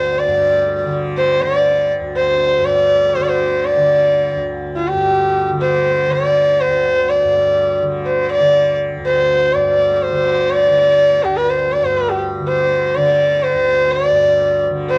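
A rich, biting sarangi with light vibrato, gliding portamento and an airy, earthy bow sits close and up front over a softly plucked, buzzing, shimmering tanpura drone in this meditative, introspective Indian classical excerpt at 122 BPM in 7/4, tuned to A4 = 435 Hz, with light reverb and the worn, warbly pitch drift of old cassette tape.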